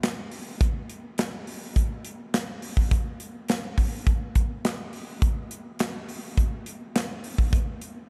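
Bathed in a moderate cathedral reverb, this slick, danceable 8-second funk clip at 104 BPM in straight 4/4 features only a polished, airy acoustic studio drum kit placed up front, with a tight kick, medium-tuned snare, hi-hat and handclaps.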